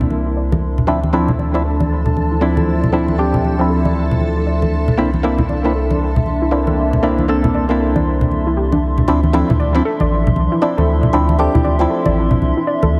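A hollow, percussive organ stab sits up front in this moody, late-night deep house excerpt, treated with chorus, phaser and analog delay over a swung groove of round, deep analog bass with tube saturation and low-tuned congas played close and dry with soft hands. A nostalgic tape-like pad warbles beneath, while a dusty, lo-fi pluck plays arpeggios in the background under a filter sweep until the drop at 9.1 s, and a silky string machine joins at 1.3 s and stops at 9.1 s. The harmony moves between C9 and Dm9, and the whole is bathed in a lush hall reverb with a heavily compressed, radio-like sound.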